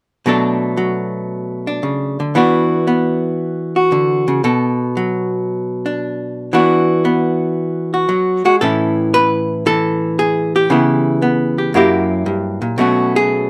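Lightly reverberant and close, this playful, swinging solo jazz excerpt features a single miked and amplified archtop guitar, its dark, clean, hollow-body electric tone picked up front as it moves through Bm7 and suspended E chords before shifting at 8.6 seconds to a passage running from A through C#m7b5 and F#7b9 to a closing Bsus2.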